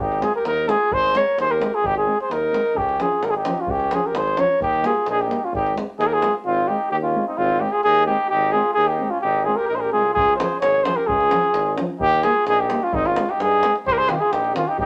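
In a straight 2/4 at 130 BPM in Ab major, this exuberant, festive Balkan brass band fragment puts a mellow, up-front cornet with vibrato on the melody over a soft-edged trumpet second line in the background, smooth-topped euphonium and trombone accompaniment, a clear tuba bass and a deep davul that drops out between 6.3 and 10.2 seconds, all in a moderate studio reverb.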